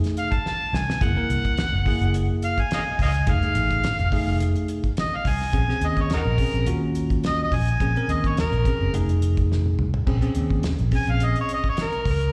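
A bell-like, clean tine electric piano and a cloth-damped, thuddy drum kit open this mournful, soulful straight-eighth soul blues together, and the overdriven harmonica takes the melody at 0.2 seconds, just before the kit plays a short fill. The harmonica sits up front, gritty and amplified, with vibrato, punchy tongue slaps and scooped notes in a pop style, and it shares plate reverb and slapback echo with the electric piano's accompaniment. A dark, round, foam-muted fingered electric bass enters at 0.7 seconds, amped and prominent in the mix. The drums bring a fat snare, tight kick and dark cymbals with a saturated, rolled-off top. The chords move from a rootless F7#9 through Gb7 and Bbm7 to Ebm7, and a second drum fill leads into a return to Bbm7 near the close. The performance is heard as a live gig through the venue's PA, with light recital-hall reverb around it, and it is cut from a longer piece.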